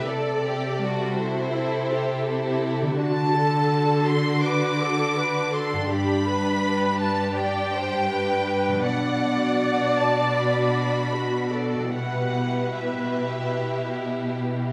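A rich, lush violin section carries a sorrowful, longing melody with smooth vibrato over a second violin line, focused viola accompaniment, intense, clear cellos holding the bass, and ringing harp arpeggios in the background, all moving with rubato through a cinematic film-score passage in a wet scoring-stage reverb, cut from a longer piece.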